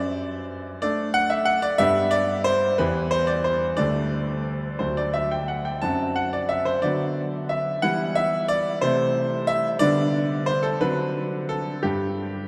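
Drenched in a cathedral reverb with a 5.3-second decay, this recording places a clear, open concert grand piano up front within a vast, echoing space. It is an elegant, graceful classical-period sonatina in 6/8 at 60 BPM, counted in dotted quarters. The solo piano spans D2 to A5 with a deep bass and moves through a gently shifting progression from D/F# through G, Em, F#m7b5 and Bm/D before reaching D7 at 10.8 seconds, in this brief passage cut from a longer piece.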